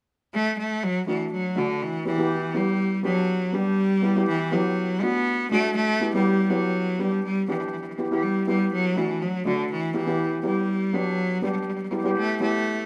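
A single bowed cello opens the recording at 0.3 s, carrying the melody between D3 and B3 with a biting, intense tone, light vibrato and an up-front presence. At 1.1 s a double seconds steel pan joins as accompaniment, struck with medium rubber sticks and sounding metallic and shimmering in a boxy small room, also placed up front. This cut from a longer calypso piece moves at 122 BPM in 4/4 with a gentle 54% swing on the sixteenths, and its mood is sunny and festive. After a brief opening before any chord sounds, the harmony enters at 0.8 s and cycles through D, Em, G and Em again and again, with the tuning set to A4 = 436 Hz. A moderate studio reverb gives the pair some space before the pan stops at 12.7 s and the cello carries on to 12.9 s.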